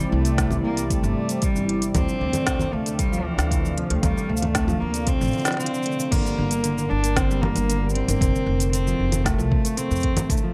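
A reedy, bowed cello carries the melody up front over a sawtooth pad with soft, detuned chorus shimmer, ringing thumb-plucked harp arpeggios and a produced kit of cabasa, congas, woody snare, smooth hats and crash, setting an autumnal, delicate folktronica mood in D minor at 115 BPM. A pizzicato upright bass with a woody tone and a deep electronic kick join almost at once, and the cello and harp trail soft delay through a light reverb as the chords move from Cadd9 to Dm7. After a brief break at 5.6 seconds the pad drops out at 6.1 seconds, and the remaining parts continue through Gm and F until this cut from a longer piece ends at 10.5 seconds.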